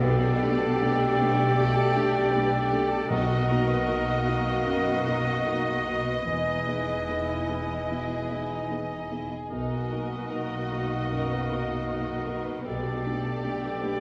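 This cut from a longer cinematic film score opens with nearly the full orchestra at once: a rich, distant violin section carries the rubato melody at 77 BPM in 4/4, joined by a bright oboe, airy hollow flute, clear clarinet and a second violin section on supporting lines, while a dark, short-sustained grand piano, a viola section with portamento, and a very quiet mellow French horn section fill out the harmony. Cellos and woody double basses ground the bass as the chords move from Gadd9/B through Bmaj7 and Emaj7, and a very quiet, dry timpani with hard mallets sounds briefly from 3.1 to 4.2 seconds. The mood is uplifting and moving, set in a moderate scoring-stage reverb.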